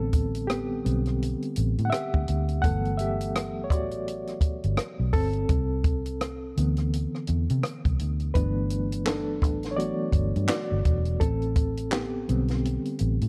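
A dark, intimate production with the close feel of a small room opens this relaxed neo-soul and R&B excerpt, set in G major at 84 BPM in 4/4 with a lazy sixteenth-note swing. A reedy electric piano carries the lead from the first moment, its clean, direct tone shimmering with tremolo as it moves through lush chords: Am11, Gmaj13, Cmaj9, back to Gmaj13 and then returning to Am11. Underneath, a vintage fingered electric bass sits up front with a round, foam-muted, amped tone, playing low from E1 up to C3. A compact cocktail drum kit joins at 0.1 seconds, dry and natural, with a tight kick, a high-tuned snare, rim clicks, hi-hat and handclaps. The whole 13.3-second passage holds one unhurried mood, every instrument close and present in the mix.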